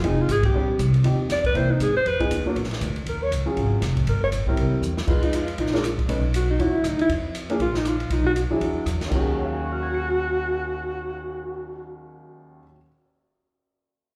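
A mellow alto saxophone sits up front and carries the melody with a subtone, vibrato and scooped notes, its smooth top touched by a slapback echo. This cool, moody slice of small-group swing and bop races along at 238 BPM in Eb minor, swinging lightly in 4/4, and is cut from a longer piece. An upright piano with a woody, natural tone supplies accompaniment across a broad range, also carrying a slapback echo. Beneath it a pizzicato upright bass gives a thumpy, steel-strung bottom. An airy, polished drum kit with dark cymbals, a medium-tuned snare and a boomy kick punctuates the groove, with a band accent at 0.4 seconds and a drum fill at 4.8 seconds. The whole performance sounds like a live club gig heard through the venue's PA, wrapped in a light, small-room reverb.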